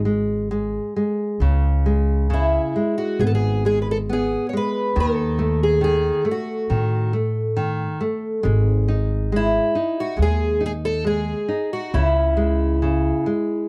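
A fingerpicked nylon-string guitar with audible finger squeak and a woody, growly pizzicato upright bass open this mournful, longing fado-style ballad in C# minor at a rubato 68 BPM, before a shimmering, octave-doubled twelve-string acoustic guitar enters at 2.3 seconds with the melody, all captured up front in a dry, close 1970s-style studio sound in this excerpt from a longer piece.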